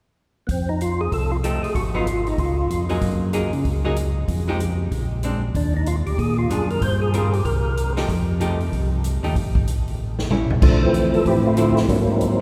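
Soul jazz organ trio excerpt with a greasy, bluesy swing, where a fat, lightly overdriven tonewheel organ with key click and percussion states the melody in short bursts over a round, dark organ bass line, a big-band drum kit with a punchy kick that plays a fill at 10.0 seconds, and a clean, hollow-body archtop guitar comping from 1.4 seconds, all washed in a cavernous cathedral reverb.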